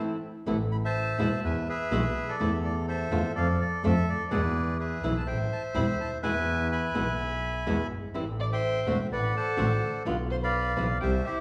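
A fingerpicked flamenco guitar opens alone at 0.0 s, its acoustic tone warm as it sets up a tense, passionate tango in A minor at 125 BPM in 4/4, played with a rubato feel and tuned slightly low to A4 = 437 Hz. A bowed double bass joins at 0.5 s, clear and biting with an earthy edge and a light vibrato, sitting up front in the low register. The bandoneon carries the melody almost at once, reedy and bright and also forward in the mix, moving through a chord progression that leans on the E chord and passes through Am7, D7/A and G7/B toward the end. At 8.4 s a dark, woody violin adds a bowed second line with vibrato and a smooth top. The band sounds as if it is playing live in one room, with a small room ambience, a wet large studio reverb and a faint mains hum. This is a short cut from a longer piece.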